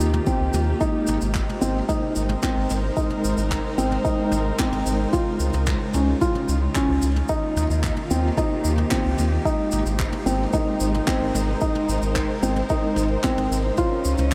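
Piano and strings electronica with a hopeful, luminous mood, this short cut from a longer piece moves in a straight 4/4 through a dreamy mix soaked in a huge ambient reverb. A felt-muted upright piano sits up front playing a soft, intimate riff in the middle register, its thick felt and audible action noise softened further by a low-pass filter and tape echo. Alongside it, a dark studio string section holds lush, woody sustained chords with vibrato and a smooth top. A round analog bass anchors the low end with a fast attack, tube saturation and sidechain pumping. A jazz brush drum kit adds handclaps, shaker and toms with a natural studio-room feel, joined from 0.3 seconds by a deep, layered electronic kick with a tape-tinged character.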